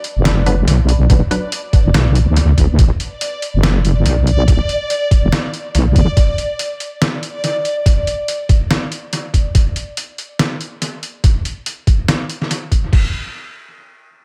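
The rhythm sits in a half-time 4/4 at 142 BPM, with a 57% swing on the sixteenths giving this deep dubstep passage, cut from a longer piece in B minor, a loose, dragging gait over a single Bm chord. A gritty, pitched-down sampler-style drum kit with crash, hi-hat and a medium-tuned snare runs through in a small room with analog delay, joined at 1.1 seconds by a thumpy, compressed electronic kick placed up front. A heavy wobble bass blending sawtooth and sine tones, resonant and touched with chorus, holds the low end until 6.1 seconds, while a brief, muted dub chord stab with a filter pluck, phaser and dub echo flickers early on. Above it, a reversed, dreamy texture of detuned triangle tones hangs as a bright, granular haze in its own reverb. The mood is dark and meditative, the mix soaked in echo and digital ambience, before the harmony falls away near the close.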